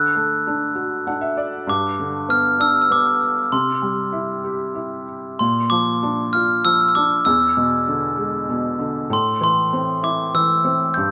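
A gentle, sleepy children's lullaby in 3/4 at 98 BPM with a rubato feel, cut from a longer piece, where a bell-like glockenspiel struck with soft plastic mallets carries the ringing melody up front over a mellow, intimate felt-muted upright piano whose audible action noise adds closeness, the piano slipping in a brief fill at 0.8 s as the chords drift from D through G, C, Bb and E7 to Am, all set in a moderate scoring-stage reverb.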